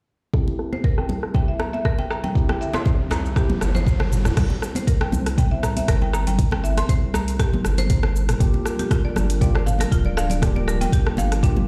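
Spiritual and driving, this afro house excerpt moves at 119 BPM in 4/4 with a light 16th-note swing, opening on a C chord and shifting to Gm7 at 8.4 seconds. A deep, up-front electronic kick anchors the groove alongside an electronic afro-pop kit with metallic hats, cabasa, rim clicks, toms and crash, its parts filtered and swept through the opening until a drum fill leads into the second section at 4.4 seconds. Close, dry congas struck with hard hands sit in the background, joined briefly by a distant, rattling djembe and a background riser that builds toward the change. A woody, buzzing marimba played with hard mallets spins vintage, band-limited arpeggios through dub echo, while a clean tine electric piano, heard through a combo amp with phaser and echo, adds stabs at the start and again near the end. Underneath, a moody, detuned analog pad holds sustained chords with chorus, and from 3.1 seconds a round square-and-sine bass with a plucky filter pumps against the kick, the whole mix played back on a big system in a bare stone room.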